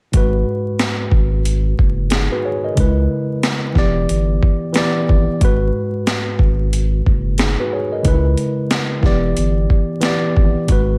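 A dry recording dusted with vinyl crackle, this gritty, moody boom-bap hip-hop passage, cut from a longer piece, moves at 91 BPM with a 16th-note swing in G# minor. A worn, slightly out-of-tune tine electric piano with a cassette-tape tint sits up front, cycling through G#m7, C#m7 and Em7, while a deep, thick, saturated sine sub bass holds sustained notes beneath it. The compressed, pitched-down sampler-style drum kit sits up front in the mix with a thumpy kick, a high-tuned snare and hi-hat, all carrying the sound of a large room.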